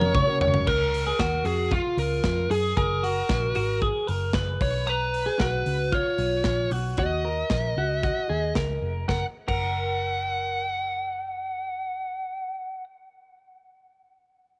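A dry, lo-fi home cassette recording captures this bright, youthful stretch of jangly indie pop, cut from a longer piece. It opens on a drum fill from an airy studio kit with a boomy kick, while a full-bodied fingerpicked jumbo acoustic guitar and a mellow, sawtooth string-machine viola pad sound only in the first 0.7 seconds. A twangy, compressed twelve-string electric guitar plays arpeggios up front, a dark, foam-muted picked bass holds the low end, and a distorted fuzz lead guitar carries the melody throughout over chords moving through C#, F#sus2, Bsus2 and D#m before returning to F#. The drums stop at 9.6 seconds and the twelve-string at 10.6, leaving the fuzz lead and bass to finish.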